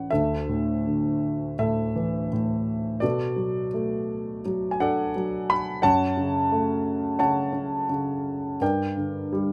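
A dark grand piano opens the recording alone, playing a tender, lyrical classical passage in D major. The tempo sits around 85 BPM in 4/4, but the beats are uneven and the rubato lets the phrasing breathe freely. The piano spans D2 to B5 and sounds mellow and a little worn, placed up front and intimate, with the audible noise of its action adding a natural, close-up quality. Its harmony moves from Dsus2 to Bm7 at 3.0 seconds and F#m at 5.8 seconds, then turns to Gm near the end, at 8.6 seconds. A light reverb gives the sound a modest sense of space, and the tuning sits slightly high at A4 = 444 Hz. This brief excerpt, lasting 9.5 seconds, is cut from a longer piece and carries a warm, gentle mood throughout.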